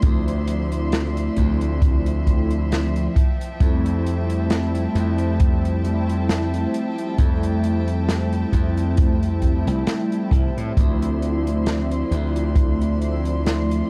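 A mellow synth brass with subtle chorus and analog delay opens alongside a dark chamber string section, punchy slap bass, a boomy kick drum and an open jazz kit of hi-hat and snare, settling into a faded, dreamy vaporwave groove at 67 BPM in F major with a light 16th-note swing. The round, detuned sawtooth brass sits up front with vibrato and a filter sweep, while the bowed sul tasto strings hold soft, intimate chords beneath it and the bright slap bass pushes forward over the chords Dm9, Fmaj9 and back to Dm9. The dark, dry production keeps the small-room drums airy and polished, and the kick drops out at 12.8 seconds, just before the cut from a longer piece ends at 13.9 seconds.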